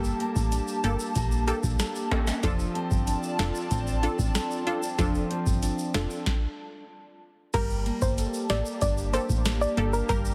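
Dancehall at 94 BPM in G minor, bouncy and sultry, built on a booming analog drum machine with a deep kick, crisp snare and metallic hats up front, a dark, round FM bass, punchy sawtooth chord stabs with chorus, an airy, breathy pad pumping under sidechain, fingerpicked nylon-string guitar arpeggios and distant tube shaker and timbales, with a stop from 6.3 to 7.5 seconds before a soft, triangle-toned lead pluck with chorus and delay enters at 7.5 seconds over Gmadd9, the mix carrying light reverb and a heavily compressed, radio-like sound.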